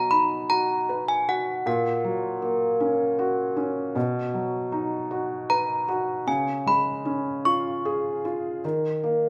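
A wet reverb from a large studio surrounds this short excerpt, which sounds like a small group playing live together in one room, with both instruments sitting up front. It is a children's lullaby, innocent and sleepy, moving gently in 6/8 at about 52 beats per minute counted in dotted quarters, with a loose, rubato feel and tuning set slightly high at A4 = 441 Hz. Desk bells carry the melody between F#5 and C#6, their tone clear, ringing and a little clanky, and slightly out of tune, which adds a homemade charm. Beneath them, a felt-muted upright piano supplies a soft, mellow, intimate accompaniment from A#2 up to B4. The harmony drifts from B through F#/A# and back to B, then rises to C# before settling on a bare D#5 chord near the close. The bells stop at 8.3 seconds, leaving the piano alone until the fragment ends at 9.3 seconds.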